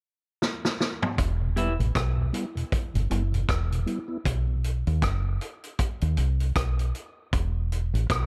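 Hypnotic and spacious, this dub reggae excerpt opens with a drum fill on a vintage kit with a punchy kick and rolled-off top, and a dark, round, foam-muted fingered bass enters up front at 1.2 seconds as the chords move from Em to B5 and E5. A soft, flute-like tonewheel organ with chorus vibrato, key click and a slow rotary speaker sits low in the mix, while a clean semi-hollow electric guitar adds a brief picked figure soaked in dub echo at 1.6 seconds. The studio ambience gives the track a roomy feel.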